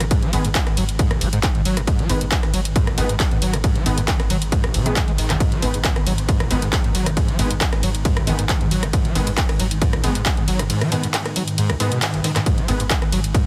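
Dry, heavily compressed radio-style sound frames this dark, hypnotic excerpt of driving peak-time techno at 136 BPM in G# minor, where an overdriven, up-front electronic kick and a punchy analog drum machine of handclaps, hi-hat, ride cymbal and rim click pound beneath a screaming, squelchy sawtooth acid line with resonant filter sweeps, distortion, chorus, delay and sidechain pumping, joined by a round sine sub bass, a very quiet swarming, detuned drone, a gritty pitched-up breakbeat kit of hi-hat and snare, and thick, detuned rave stabs sitting in the background from 0.3 seconds.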